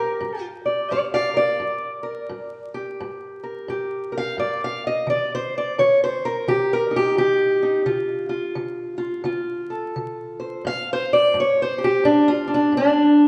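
A dark, boxy parlour-style steel-string acoustic guitar is fingerpicked up front from the start. It plays a soulful, smoky acoustic country blues in G minor at 86 BPM in 4/4 with a swung eighth-note feel, moving from G minor to a chordless stretch at 5.1 s and on through D minor to a bare G power chord. The lone guitar sits in a wet recital-hall reverb, and vinyl crackle runs through this short cut from a longer piece.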